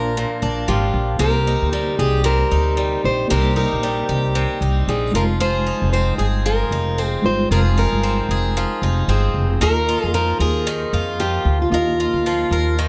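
Carefree and heartfelt, this acoustic pop piece moves at 114 BPM in 4/4 with a swung sixteenth-note feel in E-flat major, and it is cut from a longer piece. A fingerpicked, plugged-in steel-string jumbo acoustic guitar carries the melody with a full-bodied tone, sitting in a compact range from F4 to C5 until 12.7 seconds. Beneath it, a picked twelve-string acoustic guitar sits up front with a bright, boxy, shimmering octave-doubled sound, complete with audible finger squeak. Further back, a reedy, worn electric piano with a fast tremolo plays through its built-in speakers, sounding slightly out of tune. An upright bass, woody and pizzicato on steel strings, anchors the low end up front while the chords move from Bb through Cm7 and Fm7 to an Ebsus2 at 9.6 seconds. Close, detailed microphones and light reverb keep the sound intimate.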